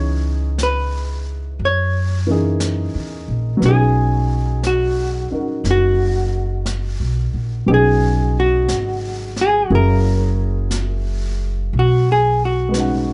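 A dry recording with a dull, rolled-off top end carries this romantic, tender jazz ballad, cut from a longer piece and moving with an unhurried swing in four. A dark, clean, picked hollow-body electric guitar sits up front with the melody over a warm baby grand piano and a woody pizzicato upright bass, also up front, while a quiet brushed drum kit in a natural studio room enters at 0.6 s. The harmony drifts from C#m7 through F#13 to B69 and F#7, and at 11.7 s the guitar takes a brief solo as the chords settle back on B69.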